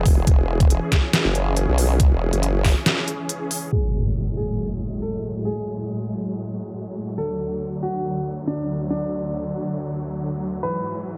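A heavy, aggressive wobble dubstep excerpt in F# minor at 139 BPM in a swung half-time feel opens on a drop where a saturated, formant-filtered wobble bass with chorus and overdrive, a knocking electronic kick, and a tape-warm kit of deep snare, crisp hats and crash cymbal drive beneath huge, detuned supersaw chords pumping through a sidechain and low-pass filter, until a brief break at 3.3 seconds gives way at 3.7 seconds to an electronic impact and a brilliant, short-sustained grand piano melody with digital delay floating over the lush sustained chords through chords of F#madd9, D and Eadd9 in a light digital ambience.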